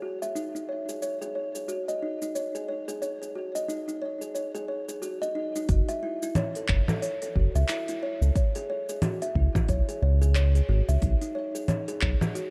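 Organic downtempo with a meditative, mystical air, moving at 90 BPM in 4/4 with a swung sixteenth-note feel and set in F# dorian, this is a short cut from a longer piece. A woody, hollow-boxed kalimba opens the recording with short arpeggios, its thumbnail plucks softened by a low-pass filter and trailed by digital delay. An organic electronic drum kit of congas, handclaps, smooth hi-hat and shaker joins almost at once, sitting up front with a tape-warm, small-room character. At 5.7 seconds the music shifts into its second section, where a round, detuned analog bass with a fast attack and sustained notes arrives alongside a deep electronic kick drum, both carrying through to 12.2 seconds. Chords move from D#m7 to F#m, C#m and finally B6, and the whole sits in a dark production with light reverb and digital ambience.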